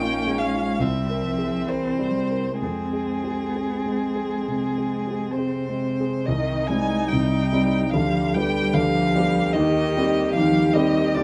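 Heard from the first moment, this elegiac, melancholic excerpt of a slow romantic piano quartet movement in 4/4 drifts with rubato at 63-76 BPM, as a vintage, up-front grand piano accompaniment sits a little above the strings beneath a smooth, distant bowed violin melody with vibrato, an expressive viola line with portamento, and a close, soft-attacked cello second voice, all caught by detailed close microphones in light reverb as the harmony moves from F minor to C minor at 6.3 seconds.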